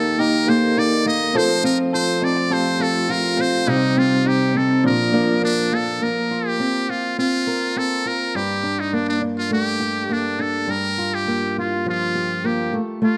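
Over a straight 4/4 pulse, this sunny, heartfelt acoustic pop excerpt sets an up-front, buzzy metal-muted trumpet singing a vibrato-laced pop melody with scooped notes above a fingerpicked steel-string acoustic guitar with fresh strings and audible finger squeak, while a reedy, lightly overdriven electric piano with fast tremolo and a twangy, clean, direct electric guitar playing arpeggios sit in the background until 6.0 and 6.6 seconds respectively, all within a moderate plate reverb.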